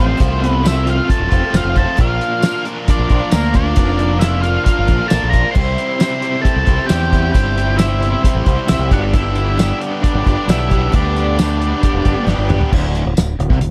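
This sunny, confident classic rock excerpt at 134 BPM opens with an octave-fuzz lead guitar carrying the melody over a darker, smooth second lead with overdrive, two bright overdriven riff guitars (one a cranked stack with tremolo) set in the background, a growling fingered bass up front, a boxy, very quiet picked swing-style acoustic guitar and a barely audible tonewheel organ holding chords through a slow rotary speaker, while a cloth-damped, thuddy drum kit with a fat snare and tight kick joins at 0.2 s as the chords move through F, Bb, C and G, the two leads stop at 12.2 s and a drum fill arrives at 12.3 s.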